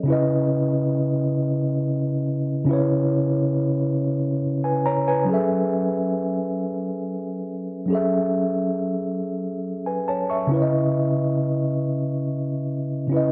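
A mellow tine electric piano carries this short R&B piece entirely on its own, sitting up front with a clean, warm tone heard through its built-in speakers and softened by a cassette-tape sheen. The mood is sultry and yearning, unfolding at a slow, swaying pace in a lilting 6/8 metre with a straight feel. The harmony moves from C#m9 to F#m9 at 5.3 seconds, then settles back on C#m9 at 10.5 seconds, spreading across a range from C#3 to C#6. A modest booth ambience with a short decay keeps the sound close and intimate, in keeping with its home-recorded, cassette character. Cut from a longer performance, it lasts just over 13 seconds.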